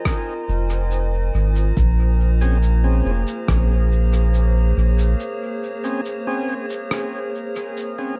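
A deep, round sub bass sits up front from 0.5 to 5.1 seconds in this meditative, spacious ambient dub fragment at 70 BPM in Bb minor, moving from Fm7 to Bbm9 beneath a warbling, nostalgic lo-fi pad with chorus and built-in reverb, a glassy sine texture of drifting overtones, a tape-warm layered kick, a muffled rim click and shaker sent into dub echo, and a gritty overdriven tonewheel organ whose stabs enter at 2.4 seconds through a slow rotary speaker and dub echo, set in an echo-heavy mix with vinyl crackle and a break from 5.2 seconds.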